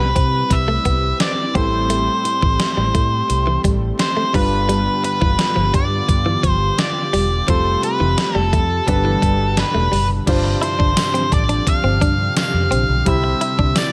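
A dark, up-front octave-fuzz lead guitar carries the melody over this nostalgic, glossy 1980s-style pop piece in 4/4 at 86 BPM, cut from a longer track, moving through chords such as Cmaj7, Am7, G7 and Fadd9. Beneath it, a clear, intimate grand piano with audible action noise, a bold, brassy analog pad with chorus, a bright, compressed clean guitar riff in the background with subtle chorus and digital delay, and a round, punchy foam-muted bass fill out the arrangement. A thumpy, sampler-style 12-bit drum machine with gated reverb kicks in at 0.2 seconds, and a jingly tambourine joins quietly at 11.0 seconds, all set in light reverb.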